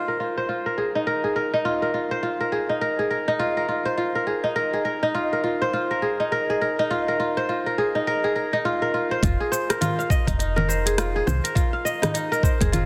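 Organic downtempo in F minor pentatonic at 103 BPM, with a swung 16th-note feel and an earthy, mystical mood. A crisp, ringing fingerpicked kora plays arpeggios up front, alone from 0.0 s, softened by a low-pass filter and trailed by tape echo. At 9.2 s a round, woody FM bass enters with a gritty, thumpy electronic kick and an electronic afro-pop kit of congas, metallic hi-hats, rim click and shaker, all set in a lush hall reverb under a dense, heavily limited modern master in this short excerpt.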